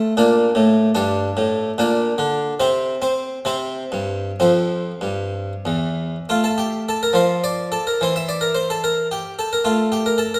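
Dance-like and serene, this brief excerpt from a baroque-style suite movement in F major features a solo harpsichord, plucked and brilliant with Italian-style octave strings, sitting up front in a wet recital hall reverb as it sways in a rubato 6/8 at roughly 62-77 BPM, moving from its opening section into a second at 6.3 seconds.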